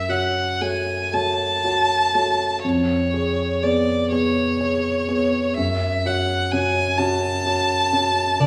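A clear, bowed violin and a warm grand piano begin together in this short romantic classical fragment in F# minor, its melancholic, solemn mood unfolding in a slow, rubato 6/8 at roughly 39-43 BPM in dotted quarters. The violin sings a smooth, even melody with vibrato high in its register, while the intimate piano supports it with long-sustaining accompaniment reaching down to its low bass, its action noise audible and both instruments placed up front. A reverberant recital-hall acoustic with a 1.4-second decay, vinyl crackle and studio ambience frame the harmony as it moves from F# minor to C#7/E# at 2.6 seconds and back to F# minor at 5.6 seconds.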